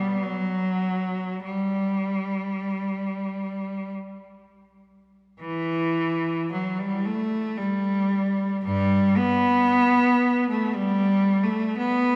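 A single bowed cello carries this yearning, lonely classical fragment, its rich tone sitting up front with an intense vibrato and a smooth top to the sound. Moving freely at a slow 36-60 BPM in 3/4, the playing bends the pulse with expressive rubato, giving the line a searching, solitary quality. The cello ranges from G2 up to B3, staying in its dark lower and middle register throughout. A phrase heard in the opening seconds returns at 5.4 s, restating the same idea before the clip breaks off at 12.2 s, cut from a longer piece. Around the instrument, a church reverb with a 2.9-second decay lingers, and the room is heard from further back, lending the solo voice a spacious, echoing setting.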